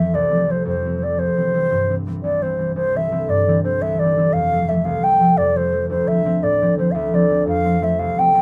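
In 9/8 at 115 BPM with a straight feel, this lively, rollicking Celtic slip jig in C major, tuned to A4 = 438 Hz, sets a woody, pure baroque flute melody with vibrato and a soft attack against a mellow concert harp accompaniment whose thumb-plucked low notes ring out. Both parts sit up front and play throughout the 8.4-second cut, the tune beginning again at 2.8 s over harmonies moving from F and C through Cadd9, Fadd9 and Dm7 back to F. Light reverb gives the pair a touch of space.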